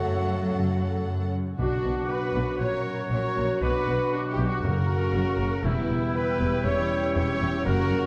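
Warm trumpet stabs punctuate this swashbuckling, adventurous cinematic cue at 118 BPM in B harmonic minor. A rich chamber violin section carries the melody, joined by second lines from a symphonic violin section, a bright clarinet, a hollow small flute group and a vintage-toned oboe entering at 1.6 s, while a lush viola section accompanies. Distant French horns and a present trombone section hold sustained chords, a ringing concert harp plays arpeggios, and an intense double bass section and a smooth cello section anchor the low end, with round soft-mallet timpani dropping out at 5.4 s, all set in a moderate scoring-stage reverb within a dark, warm production.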